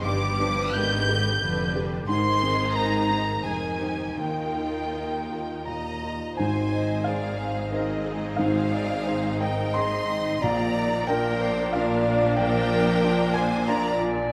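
Bittersweet and moving, this cinematic film-score passage for orchestra unfolds in a rubato 3/4 at roughly 80-94 BPM, cut from a longer piece. A rich, smooth violin section carries the melody from a slightly distant vantage, while a second, lush and focused violin section sings a supporting line beneath it, and a bright silver flute with a crisp attack adds a pure, lifted counterline in the background until 5.7 seconds. A soft, felt-muted upright piano gives the accompaniment an intimate, muted heart, joined by background violas, a very quiet thumb-plucked concert harp ringing through arpeggios, and bowed cellos and double basses anchoring the bass with an even, vibrato-rich glow. At 6.4 seconds the harmony shifts onto Ab and then Bb, and a roomy solo clarinet enters with a second line as a mellow French horn section settles in behind with sustained chords. The whole ensemble sits in a wet scoring-stage reverb that lends the strings a lush, enveloping bloom.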